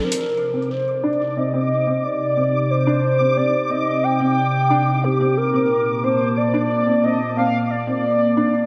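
Bathed in a lush hall reverb with a bright 1980s-style digital sheen, this melancholic, eerie IDM excerpt moves at 90 BPM in C dorian, shifting from Cmadd9 to Bbmaj7 at 5.4 seconds. A warbling, detuned lead with vibrato, portamento and chorus carries the melody over a full-bodied, lo-fi tape-like pad of sustained chords that runs through a filter sweep, chorus and phaser. A felt-muted upright piano plays soft, intimate arpeggios dulled by a low-pass filter and delay, and from 0.6 seconds a flickering, grainy granular texture hovers high above in its own reverb.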